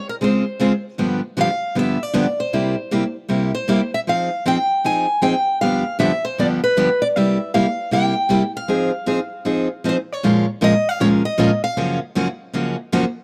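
Jazz with a swinging, bittersweet yet fiery mood, cut from a longer piece and played by two picked steel-string acoustic guitars in a dry, close room with a 1970s studio feel. One guitar carries the melody in a warm tone with audible finger squeak, while the other supplies accompaniment with a bright, fresh-stringed sound, both sitting up front. The harmony moves through a minor-key progression before shifting to a new tonal center at 10.2 seconds, and the melody drops out at 12.0 seconds as the accompaniment rings on.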